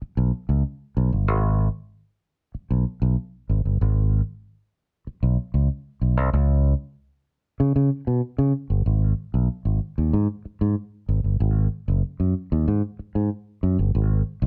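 Funk excerpt built on a single fingered electric bass, playing alone for the full 14.5 seconds with a driving, funky mood in a straight 4/4 feel. The bass sits up front with a direct, amped sound, moving between a low F#1 and C#3, while the overall production is dark and warm with a moderate small-room reverb. The line shifts into a second section at 8.9 seconds before the clip cuts off.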